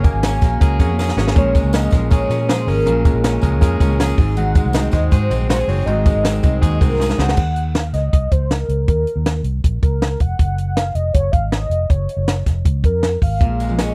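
An excerpt of restless, bittersweet jangly indie pop at 159 BPM in Eb dorian opens with a velvety, detuned sawtooth synth lead carrying the melody through chorus and tape echo over a round, foam-muted fingered bass, a dry cocktail drum kit with a high-tuned snare and dark cymbals, twangy slightly broken-up electric guitar arpeggios, a full-bodied picked acoustic guitar, a reedy electric piano with a fill at 3.6 seconds, and a jingly tambourine. The tambourine, piano and electric guitar drop out between about 7.3 and 7.4 seconds, and the acoustic guitar follows at 7.9 seconds, leaving lead, bass and drums until the guitars return at 13.4 seconds and the tambourine at 13.6, all in a close, dry 1970s-style studio sound.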